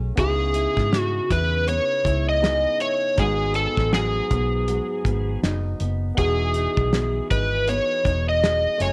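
An up-front, overdriven slide guitar carries the melody from 0.2 seconds, played with fingerpicks and colored by analog chorus and slapback echo, in this lonely, wistful bedroom-pop excerpt at 80 BPM with a 16th-note swing, tuned slightly flat to A4 = 436 Hz. Beneath it, a round, punchy, foam-muted electric bass sits forward, and a cloth-damped drum kit with a fat snare and tight kick enters at 0.2 seconds. A fingerpicked nylon-string guitar with fresh strings, subtle chorus and warbly pitch drift plays alongside a barky tine electric piano, lightly overdriven through a combo amp with a cassette-tape tint and set in the background, over C#m7, G#m7 and Emaj7, all with light reverb.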